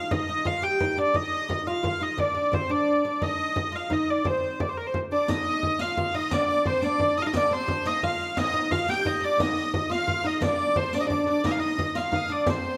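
Mysterious and ancient, this short medieval dance excerpt moves in a straight 6/8 at 117 BPM, led up front by a rich, nasal, reedy hurdy-gurdy melody over a woody, deep plectrum-plucked oud line and a close, dry frame drum, with a clear fiddle with light vibrato and a distant riq's dark jingles entering in the background at about 5 seconds, all set in a moderate recital hall reverb.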